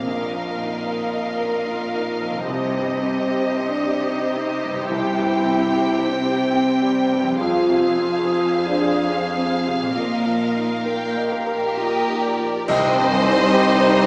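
In a rubato 3/4 at 64-75 BPM, this sorrowful, moving C minor film-score excerpt sets a warm, vibrato-rich violin section on the melody over a second violin line, background piano, viola, cello, ringing harp arpeggios and dark, distant French horn chords, all heard from further back in a reverberant scoring stage with a small-speaker quality. At 12.7 seconds a band accent arrives as an airy, hollow flute, a very quiet oboe and clarinet, a very quiet double bass section and dark, very quiet cymbals with bass drum join on the return to C minor.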